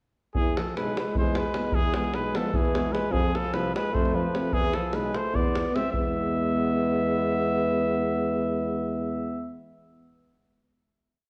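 This is a complete Balkan folk piece for brass band, fiery and restless, driven at 300 BPM in eighths through a straight 7/8 and moving from E to F and back to E. A clear trumpet sits up front with a classical-style, motif-based melody built from hook phrases. Beneath it, the alto saxophone carries a soft-attacked harmony line, mostly in thirds, with light vibrato. The tuba anchors the bass with root-and-fifth notes on the main beats, its smooth top roughened by transformer saturation. A tight, compressed davul drives a two-stick pattern up front until about 6.1 seconds, while a mellow euphonium and a dark French horn enter around 1.5 seconds, each playing an offbeat line of the chords in the background. The group lands on a final chord at 5.9 seconds, heard through a recital-hall reverb and a worn cassette tape whose warbly pitch drift gives the whole recording an aged, wavering sound.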